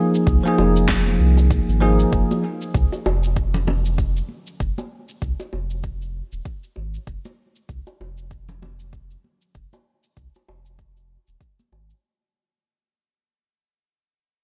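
A bell-like tine electric piano, bright and up front with analog chorus, sidechain pumping and digital delay, opens this earthy, meditative organic downtempo excerpt on an Fm7 chord before dropping out at 2.4 s. A round, deep sine sub bass then carries on beneath a tape-warm electronic kick, a fat snare and cabasa soaked in gated reverb, and soft-handed bongos and congas in a small room, all set to a gentle 16th-note swing. Light digital ambience and a 1980s-style digital production frame the piece, which fades out across its whole length.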